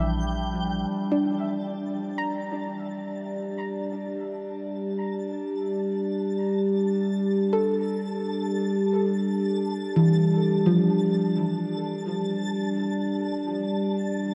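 A dreamy, reverb-soaked mix with a cassette-tape haze and a huge ambient tail opens this melancholic, spacious ambient excerpt in free time and G dorian. A soft, round, dark pluck traces arpeggios through analog chorus and diffuse delay, while a resonant, wave-folded drone with moving overtones sits up front and a deep sub bass sounds only in the first 0.9 seconds. From 0.9 seconds, a twinkling granular texture with an octave-up shimmer fades in high above, as the harmony settles on Gm7.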